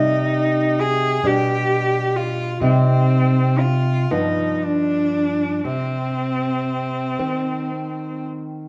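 Heard through the wet bloom of a large studio room, with both players up front and performing together live, this short excerpt from a longer romantic duo unfolds in a rubato 6/8 with a melancholic, solemn air. A single bowed cello carries the melody in a clear, smooth, even voice with vibrato, while a dark, fingerpicked nylon-string guitar supplies classical accompaniment beneath it over a minor-key progression. The cello falls away at 8.2 seconds, leaving the guitar to sound alone until 8.7 seconds.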